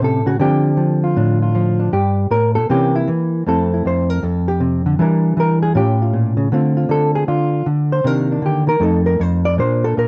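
A lone electric hollow-body jazz guitar opens this brief solo jazz excerpt, its dark, clean, fingered tone placed up front from the first moment. The mood is warm and sophisticated, with a swung eighth-note feel that loosens into rubato, so the pulse breathes freely. Moving from a bass register up to high upper notes, the guitar carries a sequence of rich jazz chords, from Dm7 and C7b9 to Fmaj7, A7b13, Cm9 and F7. A short opening phrase gives way at 3.5 seconds to a restatement of the same material, which runs until the fragment breaks off at 10.1 seconds. The recording is dry and close, in the manner of a 1970s studio, with little reverb.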